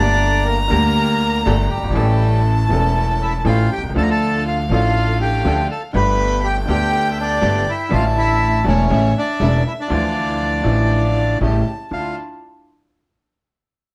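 Closely miked with light reverb, this dramatic, passionate rubato tango fragment sets a reedy bandoneon melody up front over a woody pizzicato upright bass, while a rich, smooth violin with vibrato sings a second line, a bright upright piano with audible action noise supplies short-sustain accompaniment, and a soft-attack chamber string section plays sul tasto stabs in the background as the harmony moves from Gmadd9 through A7 to Dmadd9 at 11.9 seconds.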